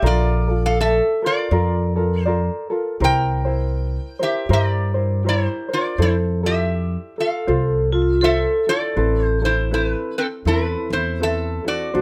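A metal-body resonator slide guitar carries the melody from the opening, its nasal, metallic tone up front and played with fingerpicks, over a thumb-plucked tenor ukulele and a woody pizzicato upright bass on steel strings. This sunny, relaxed Hawaiian piece moves at an easy 81 BPM in 4/4 with a gentle swing on the eighth notes, in F major. The chords drift from Bbmaj7 to C7 and on to Fmaj7, with the light ukulele sitting just behind the guitar while the bass stays present beneath them. At 7.9 seconds a vibraphone struck with hard mallets adds a brief, ringing second line with slow motor vibrato, a slapback echo and a boxy small-room character, falling away at 8.9 seconds. A new section opens at 9.0 seconds on Amadd9, heard through close, detailed microphones and light reverb, in this passage cut from a longer piece.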